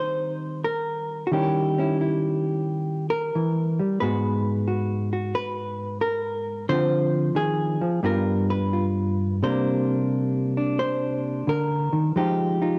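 Warm and sophisticated, this short excerpt of solo jazz at 89 BPM in Eb major finds a clean, dark hollow-body electric guitar played with the fingers, compressed and up front with a cassette-tape tint and light reverb, swinging loosely with rubato through rich chords such as Eb6, Abm9, G7#9 and Fm7 in a homely recording that feels cut from a longer piece.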